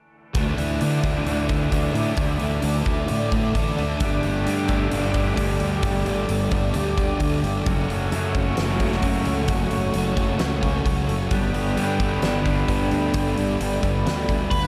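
Blissful and wistful, this shoegaze and dream pop excerpt moves at 131 BPM in a straight 4/4, with a huge arena drum kit up front, its fat snare and punchy kick sounding alongside riffs from a thick fuzz guitar with analog chorus and a cranked stack guitar sitting in the background, treated with reverse reverb, while a round, dark, overdriven fingered bass anchors the low end. A shimmering, octave-doubled twelve-string acoustic guitar fingerpicks very quiet arpeggios beneath an airy, breathy, warbling pad of sustained chords, all moving through Dsus2, Gsus2, F#m and Gadd9 in a dreamy mix soaked in church reverb. At 14.5 seconds a dark octave-fuzz lead guitar enters on a single B4 just as the cut ends.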